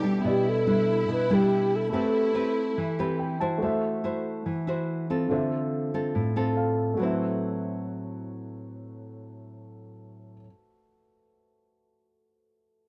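An airy alto flute with vibrato and a crisp attack carries the melody of this wistful, smooth bossa nova in A minor at 142 BPM, joined by a lush bowed violin section on a second line until the flute drops out at 3.2 seconds, with the strings following at 3.4 seconds. Up-front, full-bodied nylon-string guitar fingerpicking, complete with finger squeak, accompanies through 10.5 seconds alongside a warm grand piano, which adds short fills and plays on until 12.9 seconds. Light reverb and a dark production shape this fragment of a longer piece, which moves through chords such as Am9, Am6 and Dm7.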